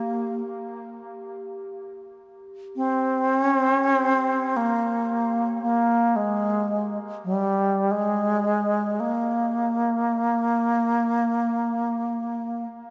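A bronze singing bowl and a bright alto flute sound together at the very start of this meditative world piece, which unfolds in free time and is tuned to A4 = 439 Hz. Struck with a wooden striker, the bowl rings a metallic G4 with slow beating, sitting in the background until it stops at 3.7 s. The up-front alto flute carries the melody between G3 and C4, its airy, tongued tone shaped by vibrato and lifted highs, and a diffuse ambient delay trails behind it. The flute continues alone until 12.7 s. A wet scoring-stage reverb with a 1.6-second decay and a dark, warm production give the fragment, cut from a longer piece, a meditative, spacious feel.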